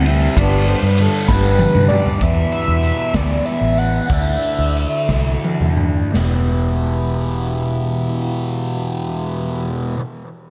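Dark and mysterious, this psychedelic rock excerpt in E minor moves at a slow 55-65 BPM in 6/8, with reedy, breathing pedal harmonium chords, a thick, double-tracked fuzz guitar riff up front with phaser and analog delay, a round, foam-muted fingered bass and a gritty, saturated garage drum kit that plays fills before falling away at 6.3 s, while a screaming, guitar-like overdriven synth lead with vibrato, chorus and phaser sings its melody from 1.3 to 5.4 s as the middle passage slows down in an echo-heavy, small-room mix.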